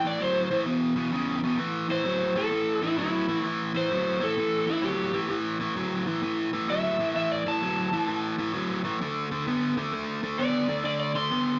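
An overdriven slide guitar, fingerpicked, opens this brooding, soulful A minor blues excerpt with a brief solo and carries the melody at a swung 130 BPM, while a biting, picked, up-front overdriven guitar riff runs beneath it from the very first beat, both heard through a moderate studio reverb with a dark, muted top end.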